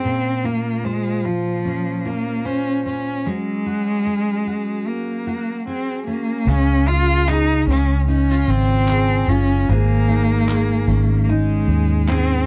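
A gently swung 16th-note feel at 75 BPM in 4/4 drives this easy-going, sunny acoustic pop excerpt in Db major, where a nasal, vibrato-rich bowed cello carries the melody up front over a double-tracked, full-bodied jumbo steel-string guitar fingerpicked throughout, joined at 6.5 seconds by a round, punchy, foam-muted vintage electric bass and at 7.3 seconds by crisp group handclaps, the whole captured in a dry, close 1970s-style studio sound with light reverb.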